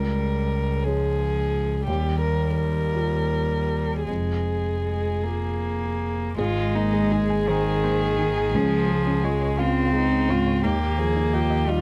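A hopeful, intimate neoclassical passage for piano and strings opens with four parts together: a dark violin carrying the melody with light vibrato and a soft sul tasto tone, a rich cello shaping a floating second line, a mellow baby grand piano accompanying, and a clear, airy-bowed double bass. The 6/8 metre moves with a rubato feel, and the harmony drifts through Db, Ebadd9 and Fm. The piano's vintage character comes through in its audible action noise, while the violin and bass sit up front, each a single close, bowed player. At 6.4 s a very quiet, glassy wavetable pluck joins with crystalline, detuned arpeggios, its chorus, sub octave and filter sweep adding a digital shimmer over the Abadd9 chord that opens the second section. The close, detailed sound with little reverb keeps this fragment of a longer piece feeling near and personal.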